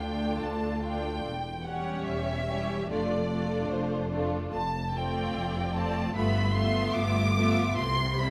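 Classical in style, this short excerpt from a slow romantic movement for string orchestra moves at 73 BPM in 4/4 with a rubato feel, its mood warm and serene. Up front, a violin section carries the melody with a focused, vibrato-rich tone, while a second violin section sings an expressive inner line that sits close. The viola section fills the accompaniment with a lush, bowed sound, and beneath it the cellos lie in the background, smooth and even. A dark double bass section anchors the bottom, its playing marked by portamento. All five sections play throughout the 8.3 seconds, the harmony turning from D minor through a G13 toward C, and the whole ensemble is bathed in a scoring-stage reverb of moderate size.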